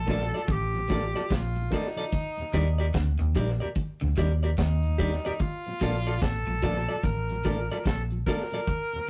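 Over a swung 4/4 roots reggae groove, a dry, up-front drum kit with a high-tuned snare, tight kick, hi-hat and analog delay sits under a round, dark, foam-muted fingered bass, while a twangy, slightly broken-up picked electric guitar and a very quiet low guitar riff join a soft, flute-like tonewheel organ with key click, chorus vibrato and a slow rotary speaker hovering in the background, all beneath a vintage-toned tenor saxophone melody played with vibrato, caught in a laid-back, warm, rough rehearsal-room recording with tube saturation and a dulled top end in this brief excerpt cut from a longer piece.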